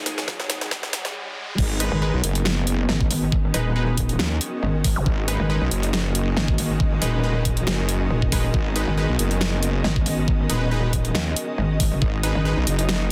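A metallic, FM-flavoured wobble bass sits up front in this aggressive, chaotic stretch of heavy wobble dubstep, its distorted low end entering at 1.9 s alongside a saturated sawtooth wobble bass with chorus that arrives at the drop at 1.6 s. Before that, a short build-up in G# minor at 138 BPM pairs an electronic riser and zap with a drum fill over a suspended chord, then briefly stops before the drop lands on G# minor in a swung, half-time 4/4 feel. The dubstep drum kit sits up front with a huge snare, bright hats and crash cymbal, all overdriven and given a small-room character, while a separate overdriven electronic kick knocks alongside it. Punchy, detuned supersaw stabs with digital delay cut through the middle. Behind them, a lush, woody studio string section holds sustained chords, and an ethereal, airy pad with ensemble chorus and built-in reverb drifts in the background, both pumping with sidechain compression. 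The dense, heavily limited master keeps the whole drop loud and crowded, and the clip is cut from a longer piece.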